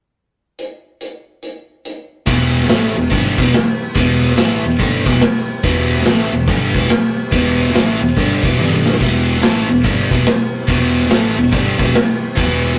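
A big acoustic rock kit opens alone at 0.6 s, its punchy kick, medium-tuned snare and bright cymbals sitting up front in a moderately ambient studio room, setting a gritty, smoky blues rock and southern rock groove at 142 BPM with a swung feel in E minor. At 2.3 s the band enters on E minor: a biting, double-tracked overdriven guitar riff cuts through up front, a dark, round, foam-muted picked bass sits beneath it, and a very quiet, thick overdriven tonewheel organ holds sustained chords through a rotary speaker with chorus vibrato. A drum fill at 8.6 s marks a brief move to G5 before the riff returns to E minor, all captured with the rough, tube-saturated character of a rehearsal-room recording cut from a longer piece.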